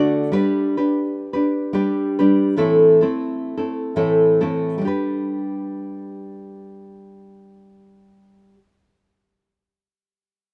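A solo nylon-string guitar, fingerpicked in a classical manner, opens this brief, sunny and heartfelt pop excerpt, moving from G to A minor and back to G with a gentle swing. Its tone is dark and acoustic, sitting up front with audible finger squeaks and light reverb. A second section begins at 4.8 seconds before the clip ends at 8.6 seconds.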